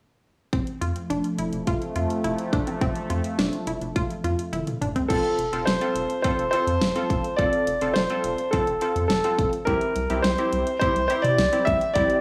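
Synth-pop at 105 BPM in 4/4, nocturnal and driving, where a nasal, warbling resonant pad with chorus and a round analog pluck with chorus and tape echo open over a rubbery square bass and punchy pop drums, until a fill from 4.5 to 5.1 seconds hands off to an intimate concert grand piano melody with audible action noise and tape echo, backed by a detuned, funky polysynth comp with chorus, all within a dry, gritty recording with light studio reverb, in an excerpt cut from a longer piece.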